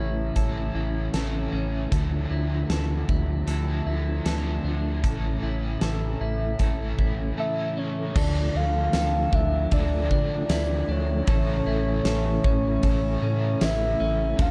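Dream pop at 77 BPM in D harmonic minor, this haunting, hazy fragment sways between A and Dmadd9, with a round, deep analog bass up front, a mellow tonewheel organ holding flute-like chords through chorus vibrato and fast rotary speaker, and a clean electric guitar picking compressed arpeggios through lush chorus and tape echo. A raw garage guitar adds overdriven accompaniment with harmonic tremolo and analog chorus, a very quiet vibraphone with soft mallets rings airily, and a huge arena drum kit with punchy kick, fat snare, bright cymbals and tambourine comes in at 0.4 s. After a brief opening flicker, the soft octave-layered synth lead returns at 7.4 s with a full, sub-octave melody bathed in chorus and tape echo, all within a dark, warm production with light reverb and small room ambience.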